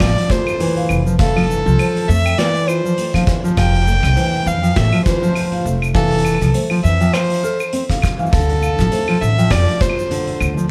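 Delicate and pastoral, this short folktronica excerpt from a longer piece moves with a gently swung feel. A dark, intimate violin carries the melody up front, bowed sul tasto with light vibrato and a soft, airy attack, its close, boxy tone roughened by vintage 12-bit sampler grit and trailed by delay. Beneath it, a nylon-string guitar plays deep, thumb-plucked classical arpeggios while a woody pizzicato upright bass anchors the low end. A distant, roomy brush kit of snare, hi-hat, shaker and claves sits in a small room alongside a punchy acoustic kick that pumps in a bright stone room. From 0.3 seconds, a mellow rosewood marimba with soft mallets adds a round second line in the background through digital delay. The harmony rests on Fmaj7 before shifting to Dm7 at 8.3 seconds, all framed by light reverb and a bed of vinyl crackle.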